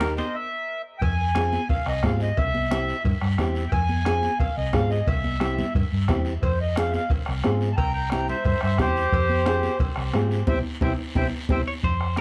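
This cumbia cut from a longer piece moves at 178 BPM in a straight 4/4, danceable and driving in F harmonic minor, swinging between Fm and C. After a brief stop, a reedy, vintage accordion sits up front with tape echo and takes a solo from 1.0 to 11.8 seconds, ranging from G4 to Bb5. Underneath, a thumb-plucked nylon-string guitar gives dark, deep accompaniment, and a round, hollow-body short-scale electric bass anchors the low end. The percussion blends a soft-beater bombo with a band-limited character, high-tuned congas played with hard hands, raspy guiro, and ringing timbales and cowbell, the latter pieces set in the background. A bright, twangy clean electric guitar is heard only briefly at the start and again at 11.7 seconds, near the end of a band accent that runs from 10.5 seconds. Light reverb gives the whole a touch of room.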